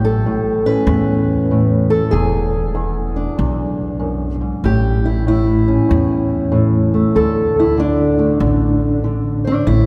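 Blues at 96 BPM in A major with a laid-back, soulful swing, this short excerpt sets an up-front, boxy, fingerpicked old ladder-braced acoustic guitar carrying the melody with audible finger squeak over a woody pizzicato upright bass on steel strings, both bathed in a cathedral-like reverb that lingers for 5.8 seconds, as chords move from A7 to E7 before a steel-string acoustic guitar solo arrives at 4.6 seconds over A and D5.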